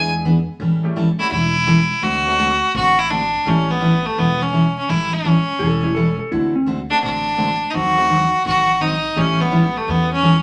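A bright, earthy fiddle carries the melody up front with light vibrato in this swinging, down-home western swing excerpt at 168 BPM, moving through A mixolydian over E7, A7, D7 and a D#dim7 passing chord. A full-bodied jumbo acoustic guitar is picked alongside, while a worn, slightly detuned upright piano with audible action noise and a thumpy gut-string upright bass sit in the background. A dark, clean lap steel slides in as a second line between 5.6 and 6.7 seconds, all set in a wet studio reverb.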